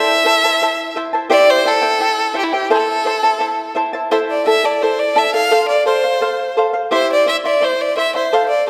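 A clear, focused violin plays a bowed melody with vibrato, close and up front, over a bright, shimmering fingerpicked charango with double strings in this festive yet wistful Andean folk fragment in 2/4, cut from a longer piece, its harmony moving from Am to C, back to Am, then on to F and C under a wet scoring-stage reverb.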